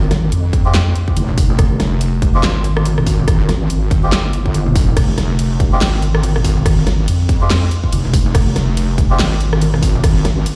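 Deep dubstep at 142 BPM in a half-time, swung feel, this cavernous, meditative excerpt sits on a single Fmadd9 chord in F minor. A heavy, saturated square-and-sine wobble bass with chorus sits up front from the start, joined at 0.1 seconds by a layered kit with a huge snare, bright hats, crash, handclaps and rim clicks in studio reverb, and by a punchy, tape-tinged electronic kick at 0.5 seconds, while low-tuned, thick-skinned congas drift distantly through dub echo. Reedy, breathy melodica stabs enter at 0.7 seconds and stop at 9.2 seconds, and the whole piece carries the boom of a big sound system in a bare room.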